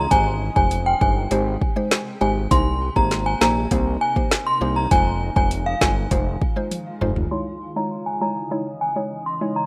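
A dry, rough home-demo mix carries this sunny, summery dancehall excerpt, where an up-front FM synth chime rings out an inharmonic melody through ensemble chorus, tremolo and tape echo over a woody, round mallet-like pluck with phaser and sidechain pumping, a blurred granular cloud pad in the background, a fat, detuned analog bass and an electronic afro-pop kit with deep kick and metallic hats, until a drum fill brings bass and drums to a stop at 7.3 seconds and a filter sweep carries the chime, pluck and pad to the end of the excerpt.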